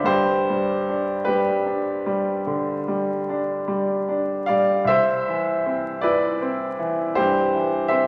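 A bright upright piano opens at once on a G chord, its woody, brilliant tone set up front in a reverberant recital hall, with a vinyl crackle alongside it. This is a brief cut from a romantic classical nocturne for solo piano, dreamy and nostalgic in mood. The piece moves slowly in a lilting compound metre, and the rubato lets the pulse breathe freely. The piano spans a broad register from deep bass to the upper middle of the keyboard, and the harmony settles onto C at 4.9 seconds. The hall's lingering reverb gives the natural piano sound an airy glow, while the crackle lends the whole a gently aged, memory-like quality through to the close at 8.1 seconds.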